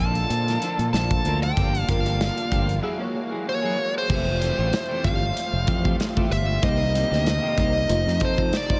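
A dark, overdriven lead guitar sings the melody up front over growly overdriven fingered bass, bell-like chorused FM electric piano, a clean chorused electric guitar riff and a shimmering celeste organ pad, with a punchy studio drum kit joining at 0.2 seconds, making this short cut from a longer piece of upbeat, glossy 1980s jazz-funk pop with a lightly swung groove, a break at 2.8 seconds and a dreamy mix soaked in huge reverb.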